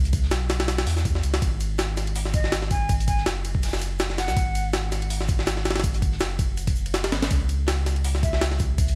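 A deep, saturated sub bass opens this raw, atmospheric drum and bass and jungle excerpt at 163 BPM, joined at 0.1 seconds by an up-front, pitched-up sampler-style jungle kit with a thumpy kick and high-tuned snare and a very quiet, dark breakbeat kit with a rolled-off top, over C#m7 and F#sus2 chords, while a breathy, mellow concert flute with vibrato and dub echo drifts in at 2.3 seconds and again at 8.2 seconds amid small room ambience and vinyl crackle.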